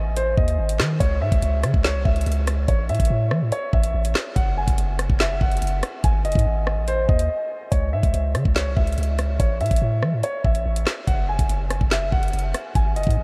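Dark and menacing, this drill excerpt runs at 143 BPM in a half-time 4/4 feel, centered on C# harmonic minor and tuned slightly sharp. A dark grand piano carries the melody from the start, its mellow, vintage tone given long sustain and trailed by an analog delay. Beneath it, a long sustained 808-style bass sits up front with a deep, sine-like body, a fast attack and a decaying tail. The electronic drill kit enters at 0.2 s, pairing a knocking kick and woody snare with metallic hi-hats, rim clicks and handclaps, also placed up front. The chords cycle through C#m, A5, F#sus2 and G#5, and a short break at 7.3 s leads into the second section at 7.7 s. The whole mix is soaked in a huge ambient reverb that lends it a dreamy, cavernous haze.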